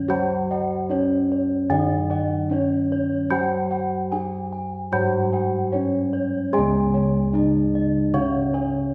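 Heard through a wet recital-hall reverb in a church or concert hall, this ceremonial, shimmering Javanese gamelan excerpt sets a mellow, dark bronze metallophone melody played with padded disc mallets over a bright, close-miked metallophone accompaniment struck with a horn mallet, while a higher metallophone with a wooden mallet adds arpeggios whose paired tuning produces shimmering beats, round vintage-sounding bossed gongs carry the band-limited bass, and a second set of airy bossed gongs traces arpeggios in the background.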